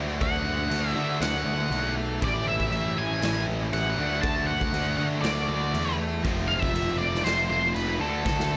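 The recording sounds dry, with little reverb, a short cut from a longer quiet-loud alternative rock piece that feels cathartic and anthemic at 120 BPM in a straight 4/4. Two bright, fuzz-drenched electric guitars grind out the riff from the first second, sitting in the background, one of them compressed and the other thicker. Up front, a growly, overdriven picked bass drives the low end, while a dark octave-fuzz lead guitar carries the melody high above from 0.2 seconds. The raw garage drum kit joins at the same moment, its boomy kick, medium-tuned snare and crash cymbal saturated and gritty, with a rolled-off top and a pumping stone-room ambience. The chords move from D to A, back to D, then F and home to D, and a drum fill at 8.3 seconds closes the passage.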